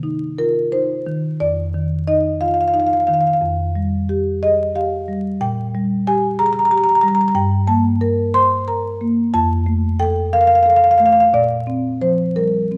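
Contemporary classical music for solo marimba, this short excerpt from a longer piece has a hypnotic, reflective mood. The marimba, played with soft mallets on padauk bars, sounds woody, mellow and round, sitting up front across a range from F2 to C6. It moves in 6/8 with a rubato feel, drifting through colorful harmonies such as Ebsus2/F, Fmadd9 and Gmadd9 before settling on Bbadd9 near 11.3 seconds. A moderate recital hall reverb gives the instrument a gentle sense of space, while vinyl crackle adds texture underneath.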